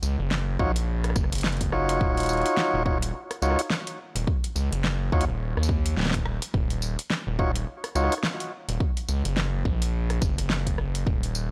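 A swung 4/4 groove at 106 BPM drives this gritty, playful glitch hop passage in Eb minor, cut from a longer piece and resting on a single Ebm9 chord throughout its 11.5 seconds. A pop drum kit sits up front from the start with a fat snare, metallic hi-hats, rim clicks and tambourine, joined at 0.6 seconds by a punchy, layered electronic kick, both carrying tape-warm colour and studio reverb. Underneath, an aggressive synth bass blends square, sawtooth and sine tones with oscillator sync and a resonant filter pluck, its fast attack and sustained notes run through tube saturation. A tonewheel organ plays stabs from 0.6 to 8.1 seconds, full and lightly overdriven with vibrato, sidechain pumping and analog delay. The whole mix has a dry hardware character with transformer saturation and a digital ambience.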